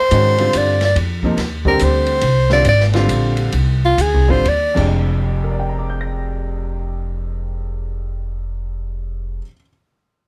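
A soprano saxophone sits up front and close, carrying the melody in a swung modal jazz waltz with a light vibrato, subtone and scooped notes that give this cut-in fragment a hypnotic, searching mood. Beneath it, a growly pizzicato upright bass with steel strings anchors the harmony around a minor sixth-ninth colour, while a clear, intimate upright piano comps with its hammer action faintly audible. An acoustic drum kit, heard as if in a small room, adds dark cymbals, a medium-tuned snare and a boomy kick, its top end rolled off so it stays smooth and low in the mix. The time begins slowing down at 2.2 seconds as the saxophone solo winds toward its close at 4.9 seconds, where the drums also drop away. Piano and bass carry on into a new section, the piano sounding woody and natural until 9.7 seconds in a dry, detailed recording.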